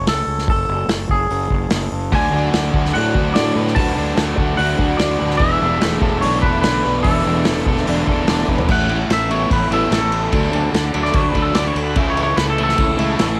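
This home cassette recording has a light reverb and a lo-fi tape grain, capturing a carefree, jangly stretch of indie rock in A major that is cut from a longer piece, moving at 146 BPM in a straight 4/4. From the start, a clean, twangy, scooped electric guitar carries the melody over a growly, fuzz-soaked fingered bass, while an up-front acoustic drum kit recorded in a small, airy room brings a punchy kick, a medium-tuned snare, dark cymbals and toms played with bundle sticks. At 2.1 s two picked, overdriven guitars join with riffs, one biting and the other compressed, chorused and sitting in the background with tape echo, and a very quiet, shimmering pulse-width pad adds slow-attack sustained chords with a retro, mellow glow. The harmony moves from F#m through D6 and E7sus4, then on to Aadd9, D6 and finally Aadd9/C#. A drum fill at 8.5 s leads into a clean electric guitar solo from 8.7 s that runs to the end.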